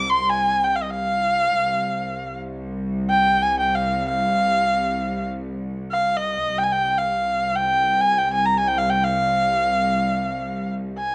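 Close, detailed microphones and a light reverb give this short excerpt an intimate, clear sound, cut from a longer piece in the Turkish makam tradition. Set in makam Uşşak on C and moving in free time, the music carries a longing, melancholic mood. A single bowed kamancheh sits up front and carries the melody from 0.0 to 11.1 seconds, its tone rich and even, shaded with vibrato and smooth portamento glides that suit the makam's inflected pitches. Beneath it, a lush symphonic cello section holds a low C drone for the full 11.1 seconds, bowed with a focused core, a smooth top and its own vibrato. The solo voice floats over this deep, sustained bed, and the pairing of one intimate fiddle with a full symphonic cello section gives the passage its yearning, suspended quality.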